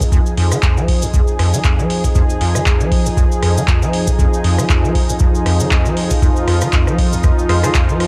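Acid house at 118 BPM with a 16th-note swing in F minor, this trippy, driving excerpt rests on a single Fm7 chord, held by a thick, detuned sawtooth unison pad while a squelchy, resonant square-wave acid bass riff runs through overdrive, chorus and tape echo, both parts pumping against the sidechain. An overdriven, deep analog kick leads the drums, joined from 0.4 seconds by an analog drum machine with handclaps, metallic hi-hats and rim clicks, plus a grainy, mellow cabasa, while a very quiet, moody ambient pad with a sine sub octave drifts in from 1.2 seconds. At 7.5 seconds a brief, nasal, band-passed chord stab with ring modulation and phaser flickers in the background, all set in a dry, gritty recording with cassette tape character.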